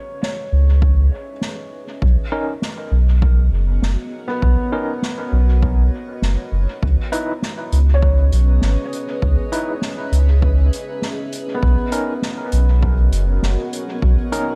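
A blurred, granular cloud pad fades in beneath the soft, tape-echoed arpeggios of a felt-muted upright piano to open this spacious, deep ambient dub excerpt, soon joined by a distant soft-mallet drum kit with dub-echoed hi-hat and snare, a round sub bass sitting up front, a punchy overdriven electronic kick in the background, and, from 2.3 s, a barky, gritty tine electric piano whose stabs carry fast tremolo, a low-pass filter and dub echo, as the harmony moves between C#m9 and Bmaj9.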